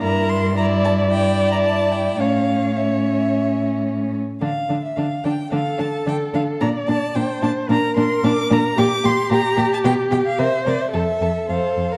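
In a straight 4/4 at 110 BPM, this stormy, dramatic excerpt from a quick classical-period string quartet movement sets a warm first violin singing the melody high with vibrato and expressive portamento over a smooth, even second violin, a rich viola accompaniment with soft attacks and gliding expression, and a clear, focused cello bass placed up front, all four close and bowed within a wet recital-hall reverb and dark production, before the harmony settles into F major at 8.8 s and the cello drops out at 11.8 s.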